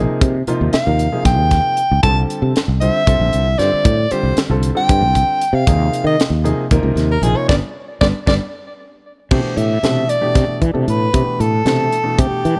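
Set in a brisk, straight 7/8 at 231 BPM counted in eighths, this electric jazz fusion passage, cut from a longer piece, feels soaring and slick. An acoustic funk drum kit with a tight kick and high-tuned snare sits mid-forward and up front, working crash cymbal, hi-hat, kick and snare, while a sustaining fretless electric bass adds a growly, direct low end that is just as prominent. Above them a soprano saxophone with a warm tone and light vibrato carries the melody in a jazz style, soloing up front through 9.3 s. A baby grand piano with a natural sound supplies quieter accompaniment, moving through Ebsus4 and Csus4 before arriving on G at 7.5 s, where the band hits an accent and the drums soon launch into a fill. At 9.3 s the music settles into C major on a C69 chord for a new section, all placed in a small room with light reverb.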